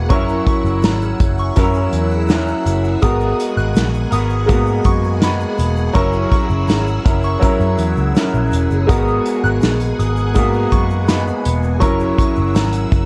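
Sunny and nostalgic, this short bedroom-pop cut from a longer indie pop piece moves at an easy 82 BPM in a straight 4/4, cycling between F#7 and G#m9 under light reverb and a dark production. A lo-fi, slightly broken-up electric guitar with lush chorus and vibrato sits beside a woody, slightly detuned upright piano with cassette-tape character and audible action noise, while a swirling, phased string machine holds sustained chords above and a soft FM synth bell with analog chorus and delay adds a gentle second line. Underneath, a round, foam-muted electric bass and an up-front acoustic drum kit played with bundle sticks carry the groove, with a grainy tube shaker barely audible in the background.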